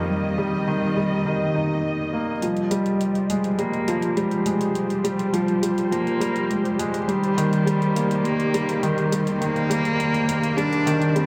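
Piano and strings electronica in F minor at 103 BPM, this hypnotic, melancholic excerpt sets a close, airy-bowed cello melody and a felt-muted upright piano riff with audible action noise up front over veiled con sordino chamber strings, then at 2.4 seconds brings in a deep, round analog bass and dark electronic hi-hats as a build-up begins and a filter sweep moves across the cello, all bathed in a dreamy, reverb-soaked hall.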